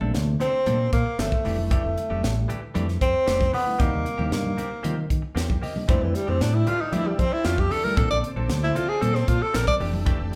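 Funky and soaring, this electric jazz fusion piece sets a vibrato-rich tenor saxophone soloing up front with scooped notes over a tight funk drum kit with a punchy kick and high-tuned snare, a fingered electric bass, thick-skinned vintage congas in the background, bright, twangy stabs from a clean, direct-recorded electric guitar, and a tine electric piano that slips in a brief fill at 5.1 seconds, while a mellow string-machine cello pad with ensemble chorus enters at 5.9 seconds, the band playing live together in a lush studio reverb.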